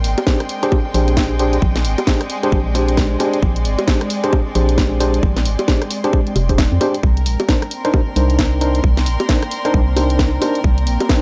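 This soulful, skippy two-step garage excerpt at 133 BPM opens with an airy, detuned pad, a clear bowed string section with light vibrato and a hollow, organ-like FM bass that is dark and percussive, all pumping against the sidechain, alongside a tape-saturated garage kit of bongos, hi-hat, rim click and cracking snare swung at 60% on the 16ths. At 0.3 s a tight, up-front electronic kick and a worn, slightly out-of-tune tine electric piano enter, the piano playing stabs through an analog delay over chords moving from Bb13 to Cm9 at 7.0 s. The sound is dry and gritty, with cassette-tape and transformer colour, while the pad sits in the background with its own reverb.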